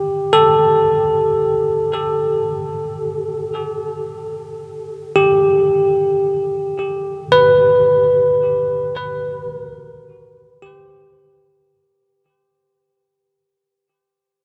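Serene and melancholic, this ambient excerpt, cut from a longer piece, floats a single bell-like tine electric piano playing bright, clean arpeggios with delay, up front and direct yet set in a wet cathedral reverb with a 5.6-second decay, fading in from the start and fading out from 5.9 to 11.7 seconds before it stops at 12.2 seconds.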